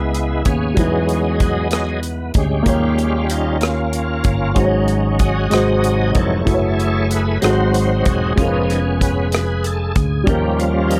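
A light reverb gives this short excerpt its space, with a bright, shouting tonewheel organ set up front. The piece is slow gospel in C# minor, moving in a straight 6/8 at 63 BPM, and its mood is solemn and soulful. The organ takes the lead across the full 11 seconds, holding full, lightly overdriven chords colored by chorus vibrato, a fast rotary speaker and plate reverb. A baby grand piano with a natural tone plays accompaniment under its own plate reverb, while a growly, amped fingered electric bass anchors the low end. A modern acoustic drum kit comes in at 0.1 seconds with hi-hat, rim click and a punchy kick. The harmony travels from C#m7 through Emaj7, D#7 and G#7sus4 to G#7, then F#m7, G#7, C#7/E# and back to D#7.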